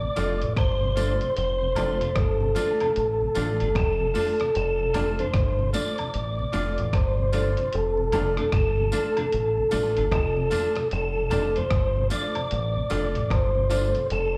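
A 4/4 pulse at 75 BPM with a 16th-note swing sets this sunny, uplifting roots reggae cut in F major, taken from a longer piece and heard as a live gig through the venue's PA with club reverb. A lo-fi sampler-style kit supplies hi-hat, rim click and a muffled, thumpy kick, while a deep dub fingered bass sits up front, dark and round, holding the low register between F1 and A1. The melody comes from a percussive tonewheel organ, lightly overdriven with third harmonic percussion, chorus vibrato and a fast rotary speaker, plus tape echo and slapback, riding high and prominent. Beneath it a second, very quiet tonewheel organ adds mellow accompaniment with key click and slow rotary, joined by a twangy, picked clean guitar in the background with tremolo and echoes. A bright baby grand piano punches short, brilliant stabs with audible action noise, and a compressed, saturated percussion layer of tambourine, woodblock, egg shaker and group handclap adds slapback-echoed color, with an F6 chord opening the passage.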